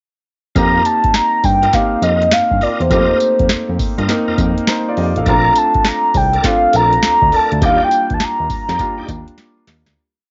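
A booming analog drum machine with a deep kick, crisp snare, metallic hats and tambourine launches this bouncy, upbeat new jack swing chorus at 0.6 seconds, its hard-swung beat tape-softened, and every other part enters at that same moment, including a bell-like tine electric piano carrying a bright, funky bass line with muted ghost notes and chromatic approach notes. Up front, a mellow, horn-like synth lead with chorus, vibrato and plate reverb sings a round, motif-based melody, while a warm grand piano with audible action noise pushes rootless chords and adds a short fill at 4.4 seconds, and a lightly overdriven tonewheel organ on fast rotary speaker fires short syncopated stabs. The home cassette recording sounds dulled at the top, and the piece fades out from 7.6 seconds as a drum fill closes it.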